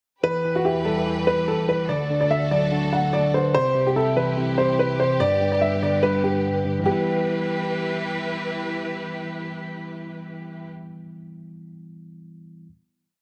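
The half-time drill pulse sits under a tense, menacing hip hop piece in a minor key, built on a brief chord loop that resolves to a held final chord around 6.9 seconds. A dark baby grand piano carries the looping melody up front, its boxy, worn tone with short sustain and audible action noise giving it an intimate, sampled feel, trailed by delay. Beneath it, a tine electric piano plays a patterned arpeggio in eighths, clean and heard as if through built-in speakers, and it rings on until 12.7 seconds, after the other parts have finished. A hollow, woody synth lead with a clarinet-like warble sits in the background, adding a sparse counter-melody with chorus and delay. A lush bowed string section holds sustained chords with smooth vibrato, and the whole is set in a light studio reverb.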